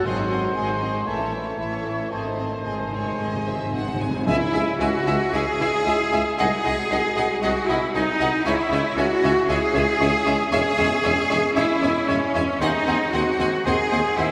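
Lush, close cellos lead the bass of this stormy, dramatic fast romantic orchestral passage in C# minor at 115 BPM with a rubato feel, as a focused violin section carries the melody over a smooth second violin section, an airy, distant flute and a vintage-toned oboe, with a clear bassoon, a very quiet viola section and mellow French horn chords beneath, a bowed double bass section below, hard-mallet timpani that fill from 2.1 to 4.3 seconds before stopping at 5.0, and from 4.3 seconds a roomy trumpet's stabs and a tuba's low line, set in a wet church reverb.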